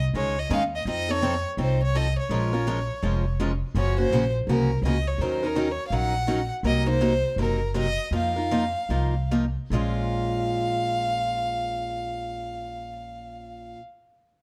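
A clear, bowed violin carries the melody with smooth vibrato, sitting close and up front in this virtuosic, bittersweet gypsy-jazz swing in Bb minor, cut from a longer piece and moving at 141-166 BPM with a swung 4/4 feel. Beneath it, a bright, boxy parlour steel-string guitar provides picked accompaniment with audible finger squeaks, while a woody, thumpy pizzicato upright bass anchors the low end. The production is dark with light reverb, and the tempo slows from 6.6 to 9.7 seconds as the harmony passes through Cm7b5 and F7sus4 before settling on Bbm7.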